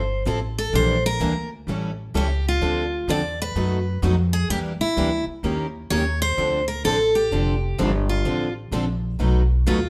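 Swung eighths at 128 BPM in 4/4 drive this short excerpt of acoustic string swing in the jazz manouche style, set in D minor with a swinging, bittersweet mood. A picked steel-string concert guitar carries the melody up front from the start, ringing bright with fresh strings and an audible finger squeak, while a pizzicato upright bass with gut strings sits alongside it, woody, dark and thumpy. Two more picked steel-string guitars join at 0.3 seconds as accompaniment, one a boxy parlour instrument and the other a full-bodied dreadnought tucked in the background. The harmony moves from Fmaj7 through Em7b5, A7 and Dm7, then B7, Em7b5 and Eb7 before settling on Dm7 and turning to B7 near the end. A moderate studio reverb gives the small ensemble a natural sense of room.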